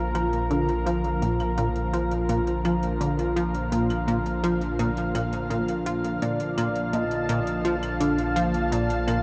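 A straight 4/4 pulse at 84 BPM in Bb major drives this cosmic, luminous stretch of sequencer-driven ambient space music, with overdriven electronic hi-hat and claves fading in under a punchy, funky analog bass riff dressed in chorus, delay and shimmer reverb. A lush, airy unison pad holds thick, detuned chords up front while a round sine sub bass sits deep beneath, all bathed in a long, wet plate reverb. At 6.2 s a retro pulse-width lead enters with a dark, shimmering melody, its vibrato and cassette-tape colour adding a nostalgic haze to this excerpt from a longer piece.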